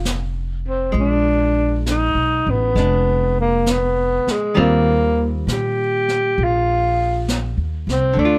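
Swung eighths in a slow 4/4 carry this intimate, romantic jazz ballad excerpt, where a breathy, whispered tenor saxophone sits up front with a mellow subtone, soft attacks and scooped notes, bathed in plate reverb. A clean, hollow-bodied archtop guitar picks out the accompaniment while a woody pizzicato upright bass anchors the low end, and from 0.1 s a distant, roomy brush kit with a rolled-off top adds brushed snare and hi-hat. The harmony moves from Bbmaj9 through Bb7b9 to Eb69 under a light reverb.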